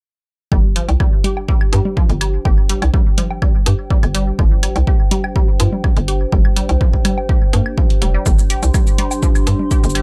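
A punchy, up-front kick, a hollow, bouncy FM bass, tape-warm congas and woodblock with delay, and a squelchy, resonant blip pluck run through phaser, cassette tape and delay all start together at 0.5 seconds in this cool, hypnotic minimal techno, with analog hi-hat and shaker joining at 0.8 seconds and a dark, warbling lo-fi pad with chorus arriving at 1.3 seconds, as sidechain pumping breathes through the bass, pluck and pad over a dry mix sitting on a Gsus4 chord.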